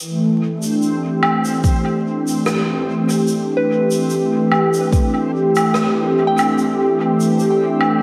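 The rhythm sits at an unhurried 73 BPM in 4/4 with a light swing on the sixteenths. A shaker, woodblock and rim click in a natural hall sound carry a dub echo throughout this hazy, deep ambient dub fragment in A minor. A deep, layered electronic kick drum sits up front from 1.6 to 5.1 seconds, its tone tape-warm. Also up front, a smooth, detuned sawtooth pad holds a dark Am7 chord with a soft attack, long release and chorus. A reversed, granular texture swells in early, dreamy and bright in its own reverb. From 3.6 seconds a pure, mellow FM bell adds chorused, tape-echoed arpeggios in the background, while vinyl crackle and a wet echo-chamber reverb wrap the whole piece in haze.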